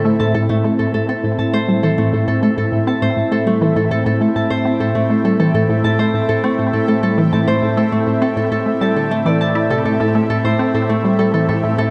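A straight, steady 4/4 pulse drives this ambient, sequencer-led space music, a short cut from a longer piece that rests on a single minor chord and feels expansive and hypnotic. From the first second, a juicy, squelchy blip pluck repeats a low riff, its detuned square and sawtooth tones snapping in with a fast attack and decaying through chorus and delay. Alongside it, a fingerpicked Celtic harp spins mellow, ringing arpeggios up front, trailed by echoes. Around them, a lush, thick unison pad of detuned sawtooths fades in slowly and sustains broad chords with a chorused shimmer and a long release. At 2.5 seconds, a very quiet, bright, bubbling texture emerges high above, its filter stepping at random. A wet plate reverb bathes the mix, and its softened top end keeps the overall sound smooth.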